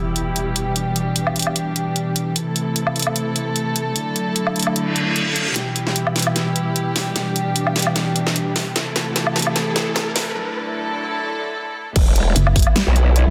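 An impact and dark, intimate chamber strings holding sul tasto chords in E minor open this menacing 150 BPM half-time dubstep fragment, joined at 0.2 s by a huge up-front snare, hi-hat, crash and woodblock kit, with a reverse cymbal and riser building through a drum fill and a break before the drop at 12.0 s unleashes a punchy overdriven kick and a bright, aggressive growl bass, with a detuned, pulsing pluck wobble bass entering at 12.4 s, all in a lush hall.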